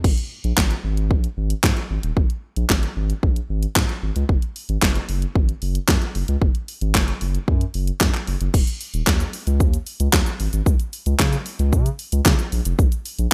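A saturated sub bass and an electronic pop drum kit start together at the very opening of this energetic, bittersweet dance-pop excerpt, cut from a longer piece. The kit sits up front with a punchy kick, a fat snare, handclaps, hi-hat, shaker and crash cymbal, its layered, produced sound wrapped in gated reverb. Alongside it, the deep, thick sine bass, also up front, holds sustained notes with a fast attack, its pumping sidechain pulse giving the groove a breathing lift in a straight 4/4. Both parts play throughout, and the arrangement moves into a new section at 8.5 seconds before the cut at 13.3 seconds. The whole recording carries a bright 1980s-style digital sheen and a digital ambience.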